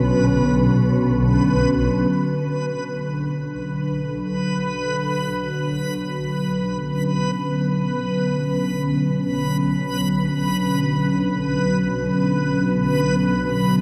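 A sweeping, resonant sawtooth pad holds a B minor chord up front from the very start, over a swarming, detuned sine drone low in the register and a reversed, bright, dreamy triangle texture high above, in an ominous, desolate dark ambient fragment in free time, with the granular drone fading in from 2.1 s inside a vast, echoing space of huge reverb.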